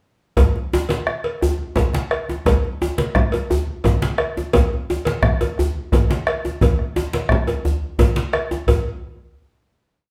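Powerful and festive, this short West African traditional drum ensemble piece in a straight 12/8 has a deep, dark bombo and a tight, cracking djembe with metal rattles sitting up front, bright low-tuned congas and a metallic, vintage-toned cowbell playing its bell pattern, all captured live in one room with a wet studio reverb before a final hit at 8.7 seconds.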